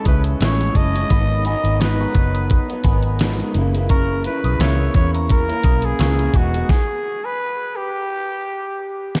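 A dreamy mix soaked in a moderate, lush hall reverb gives this short excerpt of mellow, lonely indie and bedroom pop a hazy, faraway glow. At 86 BPM in 4/4 with a light swing on the sixteenths, a dusty soul sampler-style drum kit sits up front with a thumpy kick, fat snare and hi-hat, its compressed grit joined by a dark, round, foam-muted fingered electric bass. An electric guitar through a small old amp plays the accompaniment, slightly broken-up and lo-fi, its lush chorus and warbly pitch drift wobbling over Amaj7, G#m7, F#7 and Emaj7. A growling trumpet carries the raspy, gritty melody with light vibrato and a smooth top, trailed by subtle chorus and a diffuse ambient delay. Far in the background, a glassy, crystalline FM synth bell adds a trembling second line high above, its fast attack decaying into chorus and delay. Around 6.7 seconds the band drops away, leaving trumpet and drums to hang over an open space until a drum fill at 8.8 seconds.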